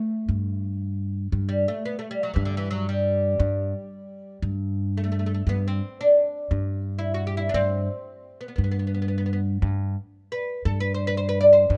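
In a straight 6/8 pulse at 58 BPM, this stately, passionate Persian passage in G dastgah mahur, cut from a longer piece, sets an up-front, woody, fretless oud with plectrum-plucked double strings carrying the melody from D3 to D5, joined at 0.3 s by a growly pizzicato upright bass holding G2 on steel strings, all captured with close, detailed microphones in a dry sound.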